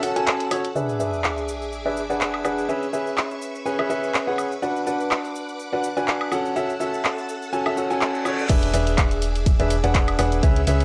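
This uplifting, joyful piano house excerpt opens with a clear, boxy grand piano riff up front, a shimmering, vintage string machine holding sustained violin chords through an ensemble chorus, and a house drum kit of crash and ride cymbals, handclaps, bright hi-hats, shaker and woodblock, all over a swung groove. A sub drop lands at 0.8 seconds as the piano moves through a filter sweep, and its short-sustain riff and the warbling strings both carry sidechain pumping. The chords move from F#m7 through E7, C#m7 and Bm before returning to F#m7. A reverse cymbal rises at 7.8 seconds, and at 8.5 seconds the drop arrives on E7 with a punchy, layered electronic kick and a round, dark FM bass that also carries sidechain pumping. The mix sits in light reverb and digital ambience, with a dry, gritty hardware character and the grain of cassette tape.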